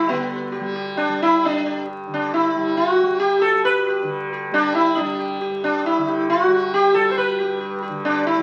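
In a straight 4/4 pulse near 136 BPM that gradually speeds up across its 8.4 seconds, this short excerpt of Hindustani classical music sits in raga bilaval on G, tuned slightly below standard pitch at A4 = 439 Hz. The mood is serene and meditative. The sitar carries the melody between B3 and C5, sitting up front with a round, plectrum-plucked tone whose buzzing voice is haloed by the ringing of its sympathetic strings. Beneath it, a tanpura holds a mellow, softly plucked drone from G2 to G3, set lower in the mix with its own shimmering resonance. A moderate studio reverb gives the pair some space, while the sound of a very old 78 rpm record, complete with vinyl crackle, lends the whole a worn, antique character.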